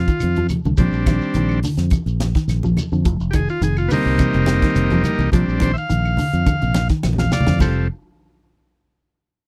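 Afrobeat excerpt at 105 BPM with a driving, hypnotic feel, where a buzzy overdriven combo organ takes an up-front solo over Cm, Bb69 and F7sus4 chords, backed by a round fingered electric bass, dark spring-reverbed electric guitar arpeggios, a tight funk drum kit with a high-tuned snare that plays a fill at 7.0 seconds, grainy shekere, woody claves and thick-skinned low congas, all captured in a dry, close 1970s-style studio sound with faint mains hum before a new section arrives on F at 7.6 seconds.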